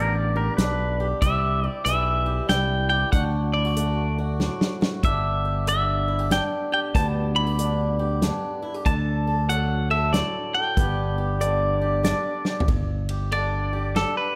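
Honky-tonk and classic country in a sunny, nostalgic waltz-time swing, where a bright, twangy clean electric guitar carries the melody through spring reverb and takes a brief solo from 12.7 seconds, a fingerpicked pedal steel adds slide-and-swell touches near the start and again around 11.4 seconds, a boxy picked acoustic guitar picks out the swing accompaniment, a punchy fingered electric bass holds the low end, and a natural small-room drum kit with a medium-tuned snare enters at 0.6 seconds and drops in a couple of short fills, all in what sounds cut from a longer piece.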